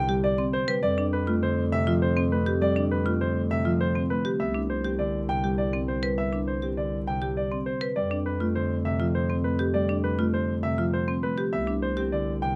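Close, detailed and nearly dry, this hypnotic, propulsive passage of minimalist classical pattern music in F lydian moves at 101 BPM in 3/4, with an intimate baby grand piano carrying the melody up front, its action noise audible, over ringing Celtic harp accompaniment, a mellow, soft-edged bass clarinet holding the low line, and woody, bright marimba arpeggios struck with hard mallets entering at 0.1 seconds, all circling between Cmaj7(no3) and Fadd9(#11).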